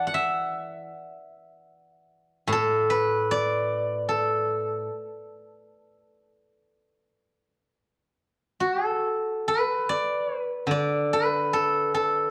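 Chinese traditional solo plucked-string music, this short excerpt cut from a longer piece has an elegant, flowing mood in a free rubato around 69-78 BPM in A zhi mode. A steel-string zither carries everything alone from 0.0 to 12.3 seconds, played with fingerpicks and ranging from A2 to A5. Its tone is silvery and ringing, sitting up front with an acoustic glow. A moderate recital hall reverb surrounds the instrument, while a worn, old cassette tape quality adds a warbling pitch drift to the sound. The music moves through an opening passage to a new section at 9.0 seconds, which continues until the cut.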